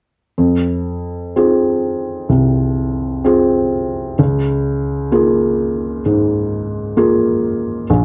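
Neoclassical minimalist piano in a reflective, melancholic mood: a solo felt-muted upright piano, soft, intimate and up front with a vintage mellowness, plays in a rubato 4/4 from 0.4 to 8.0 seconds, moving from F minor to D-flat six within a wet studio reverb, in this short cut from a longer piece.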